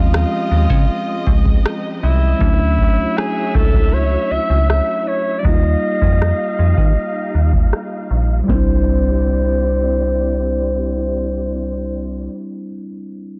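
A straight 4/4 groove from a booming analog drum machine, with deep kick, rim click and tonal snare, carries this dreamy, tender contemporary R&B excerpt until 8.7 s, while an up-front, metallic FM bass with a fast attack sits beneath a mellow, clean tine electric piano, lush bowed strings with vibrato, and a breathy, subtone alto saxophone melody full of scooped notes, set in a dry, low-pass-filtered mix with a filter sweep over the first 8.5 s as the chords move from Dbmaj9 through Dmaj9 and Ebadd9 to Cadd9.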